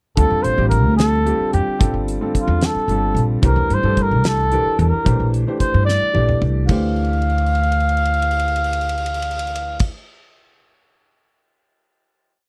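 Nocturnal and driving, this short electric jazz fusion piece in 6/8 sets a breathy, whispered trumpet spinning a motif-based solo with scooped notes and vibrato over syncopated quartal chord stabs from a boxy grand piano with audible action noise, a woody pizzicato upright bass riff and a damped 70s drum kit with dark cymbals and a fat snare, whose fills at 5.9 and 7.0 seconds lead into and run through a final Dm11 chord before the drums play on alone until 11.4 seconds in a close, dry 1970s-style studio sound.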